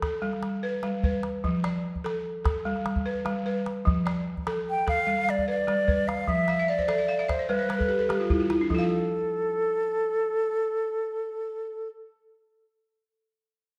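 A woody, buzzing balafon played with rubber mallets opens this hypnotic West African piece, rolling arpeggios in 12/8 over a deep, close calabash, while the harmony sways between G and F. At 4.7 seconds a mellow, hollow silver concert flute enters up front with a tongued, vibrato-tinged melody, and the balafon adds a fill before the calabash drops out at 8.9 seconds. The dark production sits in a reverberant recital hall, and the recording is cut from a longer piece.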